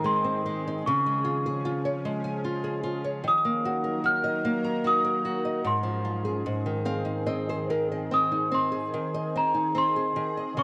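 A rubato 3/4 sway at 74 BPM carries this tender children's lullaby excerpt, where a worn, slightly out-of-tune celesta sings a sweet, bell-like melody with slapback echo over an up-front, boxy fingerpicked nylon-string guitar that plays a fill from 6.5 to 8.1 seconds, while a bright, detuned wavetable pad with chorus and tremolo holds evolving chords through Ab, Db and Ebm, all set in a moderate echo-chamber reverb with small-room ambience.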